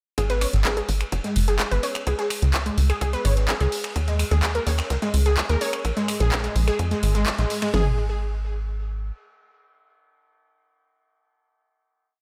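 Dreamy and emotional, this short progressive house piece in G# dorian at 127 BPM builds over G#m, C#5, D#5 and A#5 before giving way at 7.7 s to a held final note. A lush, detuned unison pluck spins a 12-step arpeggio loop that drifts against the bar, with a filter sweep, digital delay and sidechain pumping, over a dark, tight sequencer bass with tube saturation that plays a dotted rhythm and rings on to 9.1 s. Layered electronic house kits supply a punchy four-on-the-floor kick, cracking snare and toms alongside overdriven snaps, claps and bright programmed hats, while a vintage acoustic breakbeat loop with rolled-off cymbals sits in the background, and the mix carries a small-room ambience with light reverb.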